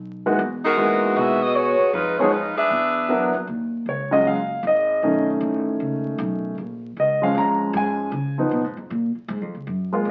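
Big band swing jazz in a dramatic, brassy mood, heard through the crackle of a very old 78 rpm record and a wet studio reverb. A tight, up-front saxophone section carries the melody with light vibrato, a soft attack and a smooth top from 0.6 to 3.3 seconds, over a woody, thumpy pizzicato upright bass on gut strings and a clear, intimate concert grand piano with audible action noise and long sustain. At 3.5 seconds the polished piano takes a solo, its deep bass present beside the upright bass as this fragment of a longer piece runs on.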